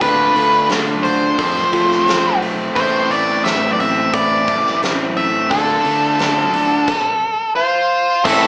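A dark, fuzz-soaked octave-fuzz lead guitar sits up front and carries the melody in this gritty, swaggering classic rock excerpt, moving at 87 BPM in a straight 4/4. Behind it, two overdriven rhythm guitars, one crunchy and bright and the other rounder, pick out riffs in the background while a punchy, direct fingered electric bass holds down the low end. A huge arena drum kit with a fat snare, punchy kick, hi-hat and crash gives the groove a big, natural room feel. The harmony moves from Dm through F and Am, back to Dm, before dropping out at 6.9 seconds, and the octave-fuzz guitar adds a second, mellower line from 7.6 seconds. In the final moments, a shimmering, woody twelve-string acoustic guitar and a double-tracked cranked stack guitar slip in at around 8.2 seconds, followed by a barely audible jingly tambourine at 8.3 seconds, just as the clip cuts off. The band sounds like it is playing live in one room, with moderate studio reverb and a slightly small-speaker character.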